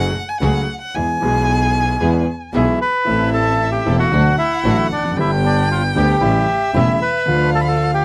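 A rubato tango feel at 114 BPM in 4/4 carries this dramatic, melancholic excerpt from a longer piece. It opens with an expressive bowed violin solo, rich in vibrato and portamento, over a smooth vintage grand piano, a biting, nasal bowed double bass and distant, lush symphonic string stabs. At 2.6 seconds a reedy, dark bandoneon takes the melody up front, and from 3.1 seconds the music settles into A minor, moving through Am, D, G, A7 and Dm, all in a dry, close 1970s-style studio sound.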